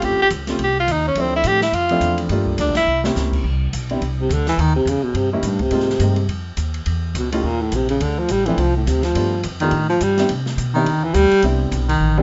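In a moderately reverberant sound with a soft top end, this swinging small-group jazz piece at 210 BPM opens with a bright, punchy tenor saxophone solo that stops at 3.0 seconds, before a breathy, whispered baritone saxophone takes up the solo at 4.2 seconds, carried throughout by a short-sustained grand piano, woody pizzicato upright bass and a quieter drum kit with dark cymbals and a boomy kick.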